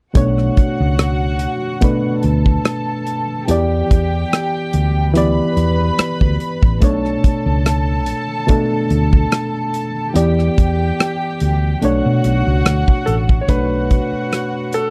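Dry and close, this short cut from a longer piece has the intimate sound of a 1970s studio session, with little reverb around it. It is lush, silky 1970s-style soul in B minor at 72 BPM, with a gently swung 16th-note feel in 4/4 that moves between Bm9 and Em7. The drum kit sits up front with a punchy kick, hi-hat and rim click, while the round, dark tone of a hollow-body short-scale electric bass anchors the low end. A reedy, barky electric piano, lightly overdriven and also up front, carries the accompaniment, and a soft-edged string section bowed sul tasto floats above as a second line, touched by a slapback echo. Near the close, at 13.1 seconds, a brilliant concert grand piano enters with a brief, polished melody.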